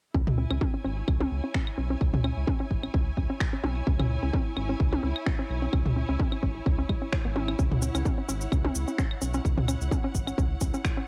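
Sparse and cool, this minimal techno passage in C# minor moves at 129 BPM with a light 16th-note swing, cut from a longer piece and built on a punchy, up-front electronic kick, a deep, round analog bass and a hollow, bouncy square-wave pluck riff carrying chorus, tape echo and sidechain pumping, while a filter sweep runs across the synth arpeggio for the whole 11 seconds. Tape-softened electronic toms and claves fill in the rhythm, analog finger snaps heard in a large room arrive at 1.5 s, and a grainy, bright cabasa joins at 7.6 s. A lush, bowed symphonic string section sits low in the mix with vibrato and cassette coloring, and a very quiet, tense, swarming drone creeps in at 1.6 s, all set in light reverb with the hazy character of a home cassette recording.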